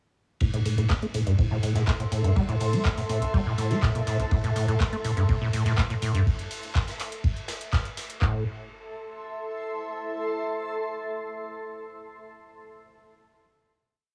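Acid house at 123 BPM in A minor with a trippy, raw mood, built on a squelchy, saturated sawtooth acid bass riff sweeping its filter up front over a booming tape-warm drum machine's four-on-the-floor kick, claps and metallic hats, a gritty, high-passed garage breakbeat kit pumping underneath, and a blurred, detuned granular cloud pad entering at 1.6 s and sustaining into the final chord section that begins at 8.2 s, fading by 11.8 s, all within a small-room cassette home-recording sound.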